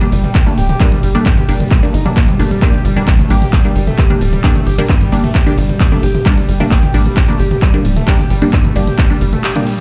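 Intense and industrial, this driving peak-time techno excerpt is anchored by an up-front, layered electronic kick and a dark, tight sequencer bass of sawtooth and square waves that pumps under sidechain. Alongside them, an analog drum machine re-recorded in a small room adds handclaps, hi-hat, ride cymbal, tambourine and toms. A gritty, screaming synth lead with vibrato plays a riff through phaser, delay and pumping, while muted, detuned dub chord stabs with a cassette-tape tint carry the same phaser, delay and pumping; the whole sounds as if played on a big sound system in a bare room, with a band accent at 9.4 seconds.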